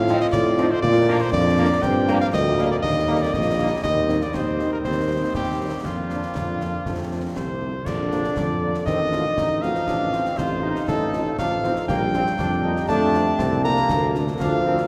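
A straight 2/4 military-style march for wind band, spirited and proud, heard in a fragment cut from a longer piece. An up-front cornet with warm, light vibrato carries the melody in classical style over a punchy, mellow tuba bass, while a dark euphonium with vibrato sings a second line in the background. A clear trombone section sustains chords behind them, a very quiet, close-miked French horn section adds soft accompaniment, and close, dry concert snare, bass drum and dark-toned clash cymbals drive the beat, all within the long, wet reverb of a church or concert hall.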